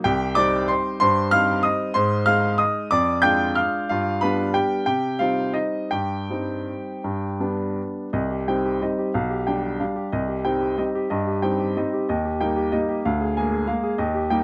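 A solo upright piano, woody and polished with long sustain and close, dry presence, opens this sparkling, elegant classical waltz excerpt in C minor, moving in a rubato 3/4 between 154 and 206 BPM across a range from B1 to G6, first through a phrase that turns from C minor toward G7 and then, from 8.1 seconds, into a second section that lifts toward E-flat before breaking off at 14.4 seconds.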